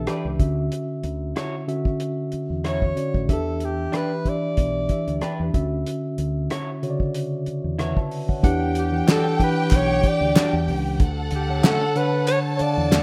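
A rough home-demo mix with light studio reverb carries this bittersweet, silky excerpt of lush 1970s-style soul, where a breathy alto saxophone sings the melody with scooped notes over mellow tine electric piano, round fingered electric bass, a slightly broken-up lo-fi electric guitar riff and a cloth-damped, thuddy drum kit with a fat snare, before an expressive violin section with vibrato and portamento joins at 8.4 seconds and crisp handclaps follow in the background at 9.1 seconds.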